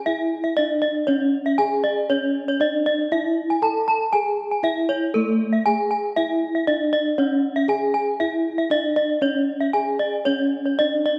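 A bronze gamelan metallophone opens the recording with the melody in its lower register, struck with padded disc mallets for a mellow, soft tone, and a second bronze metallophone joins at 0.1 s with arpeggios set higher. This is a brilliant, shimmering gamelan passage in C# pelog, tuned to A4 = 442 Hz, moving at 118 BPM in a straight 4/4. Both instruments use paired tuning, so their ringing notes carry shimmering beats, and both sit up front in the mix. The arpeggio part, played with a horn mallet, sounds dark and smooth, while the melody part sits mid-forward. A wet scoring-stage reverb with a 1.8-second decay surrounds the pair. Both parts play together throughout this single section, which is cut from a longer piece and ends at 11.2 s.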